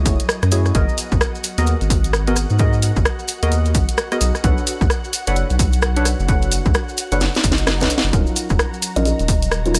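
UK garage two-step with a late-night, soulful mood, built on a soft, round dub sub bass, a punchy analog kick and a tape-warm garage kit of hi-hat, rim click and cracking snare, while dark, detuned chord stabs with dub echo ride over a warbling, airy pad that pumps in the background alongside grainy maracas, a drum fill from 7.2 seconds and an electronic swell at 7.5 seconds, and a brief woody kalimba pluck with dub echo at 9.0 seconds in this fragment of a longer piece.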